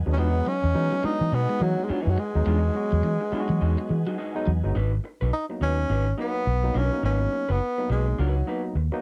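A breathy tenor saxophone leads this cool, driving funk excerpt up front, playing a smooth-topped jazz-style solo with scooped notes and light vibrato over a swung sixteenth-note groove. Beneath it, a round, punchy, foam-muted electric bass sits prominently in the mix. A barky, lightly overdriven tine electric piano, heard through a combo amp, adds stabs and plays a fill starting at 3.6 seconds. A slightly broken-up, lo-fi guitar through a small old amp plays compressed, picked accompaniment. In the background, a twangy, bright clean guitar plays a riff, and a very quiet, flute-like tonewheel organ sustains chords through a rotary speaker. Both the riff and the organ drop out before the harmony moves from Emaj9 to G#m7 at 4.8 seconds, and the whole sits in light reverb with a dark, warm production.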